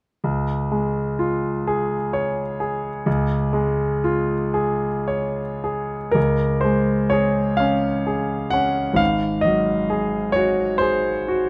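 Closely miked and detailed, with a light reverb, this recording places a clear, natural concert grand piano up front, its deep bass rounding out a range from Ab1 to Gb5. It is a tender, dreamy romantic nocturne for solo piano in Db major and 6/8, moving at a slow 35-45 BPM with a rubato feel. Cut from a longer piece, this fragment opens on a Db chord at 0.2 seconds, turns to a new section at 6.2 seconds, and reaches an Ab7 chord at 9.0 seconds.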